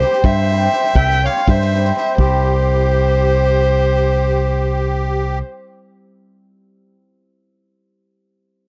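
Balkan folk in the manner of a wedding band, this short cut from a longer piece moves in a brisk 5/8 at 244 BPM counted in eighths, straight and in C major, with a virtuosic yet bittersweet mood resting on a C chord. A single violin carries the melody up front between C5 and G5, its tone rich and intimate, bowed sul tasto with light vibrato, a soft attack and an airy quality. A musette accordion adds a reedy, shimmering second line beneath it, while a fingered electric bass, bright and punchy through an envelope filter, sits prominently in the low register. A hammered cimbalom rings in the background as accompaniment and is the last part heard, sounding on to 6.9 s after the violin, accordion and bass stop at 5.4 s. A vintage drum kit with a punchy kick and medium-tuned snare plays only until 2.4 s, all of it captured in a dry, close 1970s-style studio sound with small room ambience.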